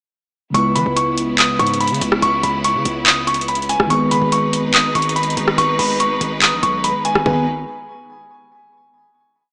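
Through a small-speaker sound with light digital reverb, this brief, dark and melancholic trap piece sets a half-time beat of hard-clipped kick, metallic hi-hats with fast rolls, handclaps, rim clicks and toms under a clear, vintage grand piano loop echoing through digital delay, a mellow, phaser-tinged electric piano holding open-voiced chords, a distant, lush bowed string pad with vibrato, and an aggressive, saturated 808 bass sliding between long sub notes, before the hook gives way to a final chord at 7.3 seconds.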